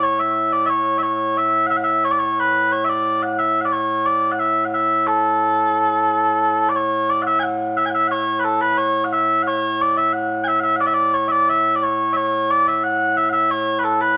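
Mellow small bagpipes play alone and up front through this Scottish traditional cut from a longer piece, their sweet, continuous tone carrying vibrato in a straight 2/4 feel. The mood is ceremonial and stirring: one strain gives way to a second at 6.8 seconds, running to the close at 14.2 seconds. Moderate studio reverb and vinyl crackle lend the sound an aged patina.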